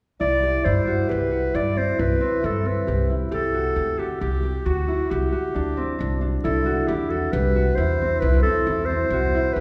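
A close-miked clarinet carries a playful, shimmering melody in classical style, set against ringing, thumb-plucked concert harp arpeggios and a woody, thumpy pizzicato upright bass on gut strings, all three playing together from 0.2 to 9.6 seconds. This contemporary chamber excerpt moves at 135 BPM in a straight 7/4 in C lydian, tuned to A4 = 441 Hz, shifting from Cmaj7 to G5/C at 3.3 seconds. A wet recital hall reverb places the listener further back in the room, though the instruments themselves sit up front.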